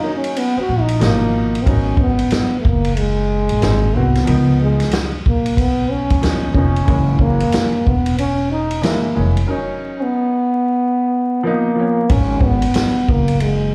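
Cool and mellow, this swung jazz-hop excerpt at 92 BPM in G# dorian opens with a breathy, whispered trombone soloing up front over a break, joined from the start by lush extended chords such as G#m9 and C#13 from a slightly detuned, woody upright piano, both bathed in plate reverb and slapback echo. A woody, pizzicato upright bass sits up front beside a vintage acoustic kit with a punchy kick, dark cymbals and a rolled-off top, and the groove breaks off in a silent gap from 9.5 to 12.1 seconds before returning. The whole mix sounds like a live gig heard through a club PA, with room reverb and a layer of vinyl crackle.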